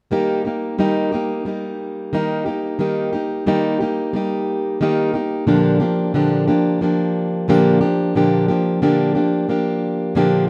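A lightly swung 4/4 pulse at 90 BPM carries this sunny, carefree pop excerpt, where a full-bodied, up-front fingerpicked jumbo steel-string acoustic guitar, plugged in and tuned slightly above standard pitch, plays accompaniment from Bb2 to G4 through the whole 0.1 to 10.5 s span, moving from Eb to Bb6 at 5.5 s within a moderate plate reverb.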